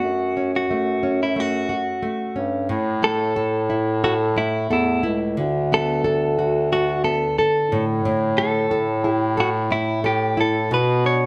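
A straight 4/4 pulse at 90 BPM carries this sunny, easy-going acoustic pop piece, where a clean, compressed electric guitar recorded direct picks the melody up front over fingerpicked classical nylon-string guitar with audible finger squeak and a clear, punchy, vintage-toned bass clarinet holding the low end, the trio playing live together in a large studio room with moderate reverb as the harmony moves from F#m to A5 at 2.7 seconds and on through D6 to Bmadd9.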